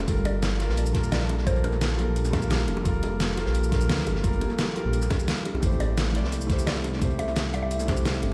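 A soft, felt-muted upright piano with tape echo opens this lush, melancholic liquid drum and bass excerpt at 173 BPM in 4/4 alongside a deep, rumbling detuned saw bass up front and tight, high-tuned bongos, soon joined by a very quiet ethereal pad, an overdriven knocking electronic kick, a gritty, high-passed breakbeat kit with hi-hat and snare in the background, and an overdriven pop kit with hi-hat, shaker and a deep snare, while a woody, warbling mallet-like synth pluck with chorus and delay carries the melody from 0.3 to 3.0 seconds and again from 5.8 seconds as the harmony moves from Gm9 to Am7 at 5.6 seconds, all heard through light reverb as if played on a big sound system in a bare stone room.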